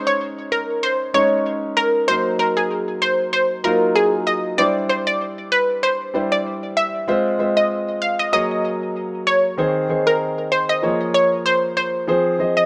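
A bouncy dancehall groove at 96 BPM in 4/4, with a light swing on the sixteenths, sets a hypnotic mood in F phrygian across this 12.7-second cut from a longer piece. Up front, an analog pluck carries the melody with a round, warbling, detuned vintage tone and a fast, decaying attack, bright and thickened by chorus and tape echo, while a warm grand piano, also up front, supplies the accompaniment. A moderate echo chamber reverb surrounds the pair, and at 7.1 s the harmony moves into a new passage that begins on Fm and returns to Fm to close.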